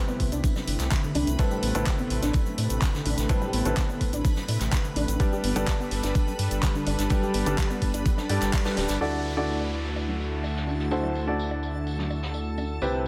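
A straight 4/4 groove from an overdriven, knocking electronic kick, a layered pop drum kit with handclaps and hi-hat, a background vintage brush kit with snare, hi-hat and tambourine, very quiet bongos and congas and a grainy egg shaker drives this euphoric, hopeful progressive house excerpt, with a round, deep analog bass pumping underneath. A lush, detuned unison pad holds sustained chords moving from Cmaj7 through Amadd9 to Gadd9, while a soft, dark pluck plays delayed arpeggios, a clear, worn grand piano adds filtered stabs, and a reversed, dreamy swelling texture sits in the background. By 9.0 seconds the kick, pop kit, shaker and pluck have stopped as the harmony shifts to Dadd9 and an electronic downlifter sounds over the pad, piano, brush kit and bass.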